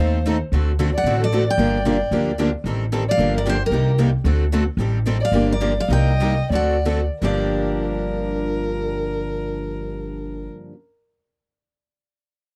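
Acoustic string swing in the jazz manouche style, this bittersweet, virtuosic fragment of a longer piece sets a picked steel-string guitar with a bright, full-bodied dreadnought voice on the melody over a dark, intimate violin second line, bowed sul tasto by one player with light vibrato and a soft attack. Two boxy parlour guitars supply the accompaniment, one sitting in the background, while a woody, thumpy upright bass on gut strings is plucked up front. The dry, close studio sound with light reverb has a 1970s character, and the music slows down between 4.8 and 7.2 seconds before settling on a G minor seventh chord.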